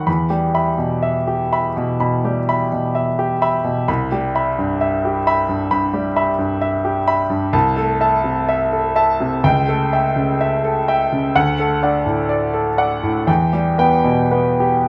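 A warm grand piano, present and up front, carries this dreamy, tender romantic nocturne alone, ranging from C2 to B5 at a slow 64 BPM in 4/4 with uneven, rubato beats. Tuned to A4 = 439 Hz, the harmony moves from Em through Cmaj7, Am/C, A7/C# and D before settling back on Em at 13.3 seconds. A moderate large-studio reverb with a 1.3-second decay surrounds the playing across this 14.9-second excerpt cut from a longer piece.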